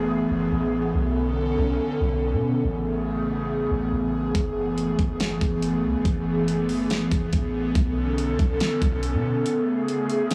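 Melancholic and hazy, this atmospheric cloud-rap fragment, cut from a longer piece, floats on an airy, breathy, detuned pad with chorus and sidechain pumping holding sustained chords over a deep, round, sine-like 808-style bass, before an electronic R&B kit with a knocking kick, fat snare and metallic hats arrives up front at 4.3 s in a half-time feel, its kick muted from 9.5 s, the recording itself blown-out and overdriven with small-room ambience.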